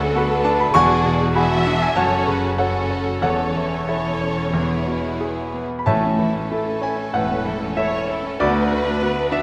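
Passionate and lyrical, this short cut from a romantic classical movement in A major unfolds in 4/4 at around 89-101 BPM with a rubato feel, led by a bright, brilliant concert grand piano up front carrying the melody with deep bass, joined by a rich violin section on the melody in the background, a smooth second violin line, a lush viola section with portamento, focused cellos and expressive double basses beneath, and a very quiet timpani entry with hard mallets at 5.9 seconds, all set in the wet reverb of a scoring stage.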